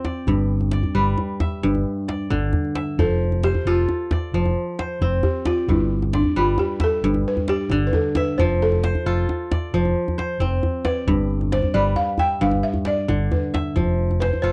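A steady 12/8 groove at 89 BPM, pulsed in dotted quarters, opens this joyful West African excerpt, with crisp, ringing fingerpicked kora arpeggios and a close, hard-handed djembe from the start and a round, overdriven fingered electric bass entering up front at 0.3 seconds. The harmony rocks between G and F in F lydian, with a dry, intimate 1970s studio sound. At 3.0 seconds a woody, buzzing balafon, struck with soft rubber mallets, takes an airy solo melody over the warm texture for the rest of the cut.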